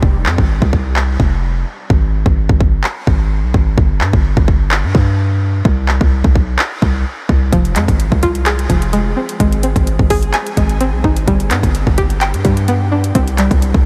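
A dark, melancholic trap and hip hop excerpt at 128 BPM in a half-time feel, cut from a longer piece and set in light reverb with a digital ambience. A punchy, heavy 808-style bass with a sine body, a noise layer and a fast attack that then decays sits up front for the whole 13.9 seconds, joined by an electronic trap kit of handclaps, metallic hi-hats and a hard-clipped kick, also up front. The opening is a break where the pluck sounds only at 0.0 seconds, leaving bass and drums over an F minor chord that drops away at 1.9 seconds. At 7.5 seconds the string-like resonator pluck returns, twangy and bright, built from a sawtooth with a noise layer, a filter sweep and chorus. From there the harmony moves through F minor, A-flat and G before settling on a C power chord near the end.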